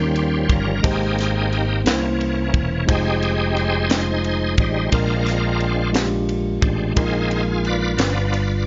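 A softly reverberant studio sound with a dark top end carries this slow, reverent yet jubilant gospel excerpt at 59 BPM in 6/8, where a bright, shouting tonewheel organ with key click, slow rotary speaker and chorus vibrato solos up front on sustained chords over a mellow tine electric piano, a round fingered electric bass, a crisp fusion drum kit with punchy kick, high-tuned snare and ride, and group handclaps entering at 1.9 seconds, moving through chords like Eb7, Abmaj7, C7b9 and Fm7 before settling on G7.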